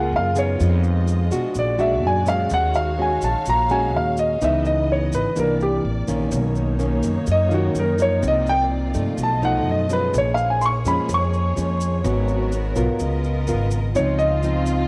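Bossa nova with a breezy, romantic mood, where a clear, up-front grand piano carries the melody as a solo over fingerpicked nylon-string guitar, lush bowed strings holding sustained chords, woody pizzicato upright bass and a grainy tube shaker that joins at 0.4 seconds, with a rich violin section adding a second line at 14.0 seconds; the piano, guitar and both string sections carry a cassette-tape colour, all in a small room with light reverb.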